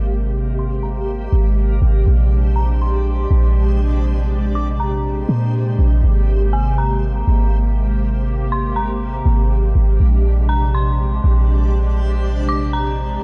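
A half-time hip hop groove at 121 BPM in 4/4 drifts in a dreamy, floating mood, with a clean, boomy 808-style bass sitting up front beneath a hollow, flute-like pad that holds sustained chords through chorus and a low-pass filter, moving between Abmaj9 and Bb13. A reversed, granular texture swells softly behind them in its own reverb, while from 0.6 seconds an eerie, inharmonic FM bell carries the high melody through chorus, filtering and delay. A filter sweep runs across this dark, close-sounding excerpt of a longer piece.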